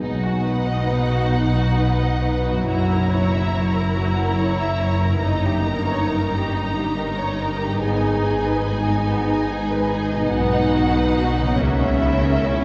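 This is a slow romantic classical movement for symphony orchestra, solemn and elegiac, moving in 6/8 with a free, rubato feel, cut from a longer piece. Violins carry the melody high in their range with focused, lush vibrato, while a second violin line sits beneath with a soft attack and expressive shaping. Violas fill in the accompaniment with a clear, bowed tone, and a concert harp rings out thumb-plucked arpeggios in the background. Cellos and double basses ground the bass with a rich, even sound that feels distant. The whole ensemble is heard from further back in a cathedral-like space, its long, wet reverb lending the chords a spacious glow across the 12.6 seconds.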